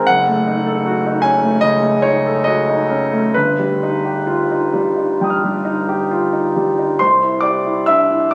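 Serene and hazy, this brief passage of impressionist solo piano, cut from a longer piece, drifts in 4/4 at 63-78 BPM with a rubato feel. A clear concert grand sits up front with deep bass and long, natural sustain, moving through F#m6, then Gaug7 at 3.3 seconds, and settling on Cadd9 at 7.0 seconds. The sound carries a moderate concert hall reverb blended with club reverb and compression, captured on a phone in the room.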